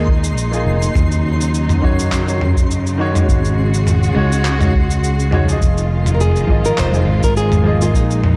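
A dark production with light reverb and a digital ambience frames this wistful sunset chillout excerpt, which has a gently swung sixteenth-note feel. A polished grand piano with tape echo carries the accompaniment while a rich, bowed string section holds soft-attacked sustained chords with expressive vibrato. Up front, a fingered electric bass anchors the low end beside a deep, overdriven electronic kick and a gritty, compressed sampler-style soul kit of cabasa, handclaps and toms that sounds re-recorded in a small room. High in the background, a twinkling granular texture shimmers with its own reverb and a long release. At 6.1 seconds a fingerpicked nylon-string guitar enters with the melody through a delay, over chords moving from Fm7 through Ebm7 and Ab7sus4 back to Fm7.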